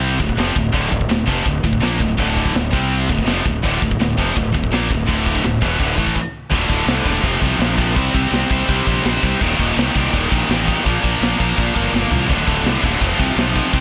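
A punchy, round fuzz bass sits up front in this relentless, epic heavy metal fragment, its fingered lines overdriven and saturated beneath a thick wall of guitars. Three bright, picked, distorted guitars drive the riff throughout, two of them set back in the background and one double-tracked. The tight metal drum kit is airy and polished, with bright cymbals, a medium-tuned snare and a tight kick, and it crashes, rides and moves across the toms, including a short fill at 11.9 seconds. The band halts for a brief stop just before 6.5 seconds, then moves into a second passage built on F, Cm, Eb and Bb before returning to Dm. The small-room sound is blown-out and overdriven, giving the whole clip a raw, crushing density.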